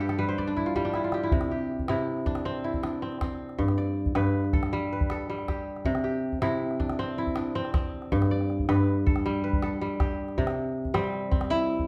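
Fingerpicked kora stands at the front of this short, hypnotic and joyful passage of West African string music, its crisp, ringing arpeggios spanning G2 to G5 over a straight 12/8 pulse. It opens with a kora fill, with a calabash fill arriving at 0.4 seconds, before the pair settle into the main groove. The calabash sits deep and close beneath the strings, giving a percussive floor to the warm acoustic picking. The harmony starts on a G13 chord and then sways steadily between C and G, with a fresh section arriving on C at 10.4 seconds. Recorded live by a band in one room, the sound is bathed in a wet, large studio reverb, and the passage is cut from a longer piece.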